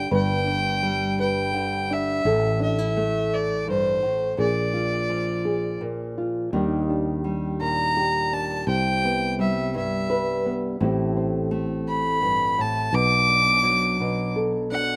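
A straight 6/8 pulse at 56 BPM carries this intimate, nostalgic acoustic folk-pop ballad, tuned to A4 = 438 Hz and captured dry in the open air, where a single bowed violin sings the melody up front with a biting, earthy tone and light vibrato over an up-front, thumb-plucked classical nylon-string guitar and a growly, punchy sustaining fretless electric bass, while the chords move through G, Am and Bb7 before shifting at 6.5 s to Ebmaj7, Cmaj7, Am7 and Bm7 in this passage cut from a longer piece.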